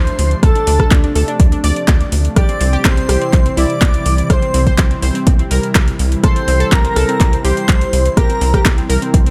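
Progressive house at 124 BPM with an expansive, dreamy mood, cut from a longer piece, where a smooth, expressive synth lead with vibrato, lush chorus and digital delay carries the melody over Dm7 and C, joined by a bright, airy second lead with dub echo, a morphing wavetable pad in the background, a round, detuned analog pluck playing arpeggios, a punchy sawtooth sequencer bass, a tape-warm deep house kit of handclaps, metallic hi-hat and rim click, and an up-front overdriven kick drum entering at 0.4 seconds, with sidechain pumping on the leads, pad, pluck and bass.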